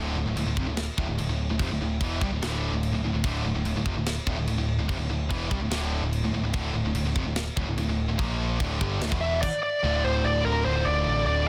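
Relentless and aggressive, this short heavy metal excerpt in D minor drives at 146 BPM in a straight 4/4, with a dark, round, punchy overdriven bass up front beneath two bright high-gain guitars in the background and a very quiet, double-tracked fuzz guitar all grinding out riffs, while a tight metal kit with a medium-tuned snare, crash and a soft-clipped kick plays from 0.4 to 9.5 seconds. The harmony sits on Dm before moving through Bb5 and D5 and returning to Dm at 9.8 seconds, just after a warm, distorted high-gain lead guitar enters up front at 9.2 seconds. The small room and dense, heavily limited modern master keep the sound compact and crushing.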